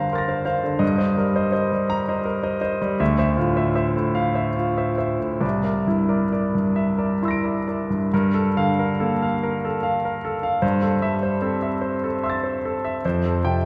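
A clear concert grand piano plays alone through this short passage cut from a longer piece of impressionist classical music, spanning a range from C2 to D7. The mood is wistful and hazy, moving slowly in 6/8 at around 44-58 BPM counted in dotted quarters, with a free, rubato feel. The harmony drifts through rich extended chords, opening on Gm11 and settling into G dorian from 3.0 s, then shifting at 8.1 s into a new section that passes through Gm9 and Am7/G before resting on Fadd9. The instrument sounds intimate and polished, with deep bass, long sustain and the mechanical noise of its action clearly audible. A wet concert hall reverb with a long tail surrounds the playing, and the piano is tuned slightly high, to A4 = 441 Hz.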